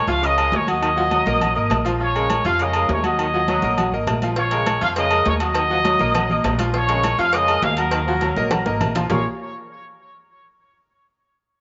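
Moderate echo-chamber reverb and small-room ambience frame this passionate, danceable salsa, cut from a longer piece, with its top end rolled off above 7.7 kHz as it drives along at 203 BPM in Bb minor over an alternating Bbm7 and Ebm vamp. Up front, a punchy, vintage-toned trumpet section carries the melody with vibrato and tape echo beside a brilliant, worn concert grand piano with deep bass. Behind them a clear trombone section plays a second line, a woody, dark pizzicato upright bass anchors the low end, and ringing agogo bells and timbales join soft-handed, damped congas, while tight, high-tuned cowbell and bongos enter at 4.4 s before a drum fill at 8.5 s.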